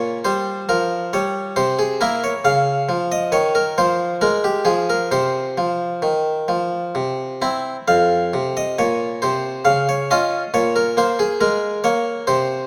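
Classical, baroque-style suite movement for solo harpsichord in F minor, moving at a solemn, flowing 68 BPM in 3/4 with a rubato feel across this short excerpt of about 12.7 seconds. The single-strung harpsichord sounds airy and bright with an Italian-style pluck, sitting up front under close, detailed microphones, with a moderate scoring-stage reverb lending a 2.0-second tail. Its harmony passes from Bbm69 through C7 and Db to open F5 sonorities over C, closing on Bbm9.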